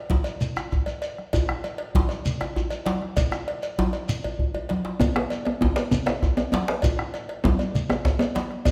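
Powerful and earthy, this short West African drum ensemble passage rolls along in 12/8 at 131 BPM, with a deep, dark bombo anchoring bright, hard-handed congas, a medium-tuned djembe, a metallic cowbell and a grainy, mellow shekere in a reverberant hall, until a drum fill at 4.2 seconds brings in a second, up-front djembe with a deep, vintage tone at 5.0 seconds.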